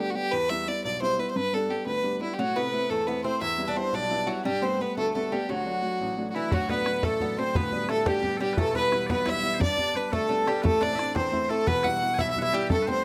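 Celtic folk jig in 6/8 at 116 BPM, bright and cheerful in D mixolydian, where a clear, smooth fiddle with light vibrato leads up front over a woody, boxy upright piano from the start, a picked, metallic Irish bouzouki joins at 2.4 seconds, and piercing bagpipes enter at 6.3 seconds with a tight, dry bodhran following at 6.5 seconds to carry this cut from a longer piece through its Em, G and Am changes in light reverb.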